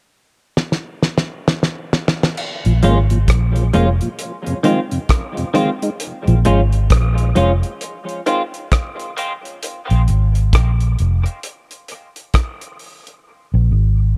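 An echo-heavy, spacious mix with light small-room reverb carries this deep dub reggae excerpt at a slow 66 BPM in Bb minor, where a cloth-damped, thuddy drum kit with a fat snare and dark cymbals opens on a fill at 0.6 seconds, a round, foam-muted vintage fingered bass sits punchy and up front from 2.7 seconds, a bright, twangy, picked clean electric guitar with analog chorus and dub echo joins over the Bbm7 and Fm7 changes, and a mellow tonewheel organ with chorus vibrato, slow rotary speaker and dub echo adds brief colour, before a filter sweep runs through the later bars and one part drops out at 13.2 seconds.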